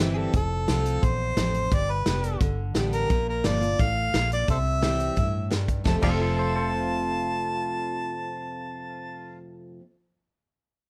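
Bright, full-bodied picked dreadnought acoustic guitar and a round, foam-muted vintage electric bass open this easygoing, nostalgic honky-tonk country excerpt at 174 BPM in F major, joined at once by an up-front solo harmonica with light vibrato, tongue slaps and scooped jazz-style notes, while a punchy natural drum kit with bright cymbals drives until 6.1 s, just after a clean, twangy pedal steel enters at 6.0 s with slide and volume swells, all in a dark, warm production with moderate studio reverb.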